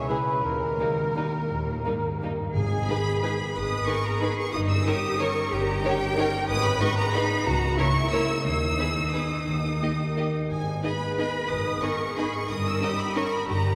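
Classical orchestral ballroom waltz in G# minor, sweeping and dark, moving in a rubato 3/4 at 160-198 BPM in a resonant church acoustic, cut from a longer piece. An up-front, smooth violin section with vibrato carries the melody over harp arpeggios, a lush second violin line in the background, a very quiet viola accompaniment, and bowed cellos and double basses on the bass, while a dark, punchy cor anglais adds a brief second line until 2.2 s. Close, dry timpani with medium mallets touch in very quietly at 2.5 and 8.4 s, and the harmony moves mainly between G#m and D# chords, passing through an A#dim/C#.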